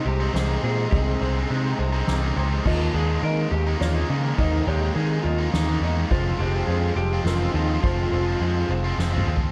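Post-rock in 3/4 at 104 BPM and F minor, this cinematic, cathartic fragment sets a clean lap steel guitar melody with slide, volume swells and digital delay over veiled, con sordino strings, delayed felt-muted upright piano arpeggios with audible action noise, and very quiet twangy electric guitar arpeggios. Two picked guitars, one raw and overdriven and the other tight and distorted, drive a riff, while a growly, punchy electric bass sits up front from 0.1 seconds. A soft-mallet drum kit with a boomy kick and fat snare enters at 0.3 seconds and plays a fill at 9.0 seconds, with the dark, dry production moving through Abadd9/C, Ebsus4 and Fmadd9.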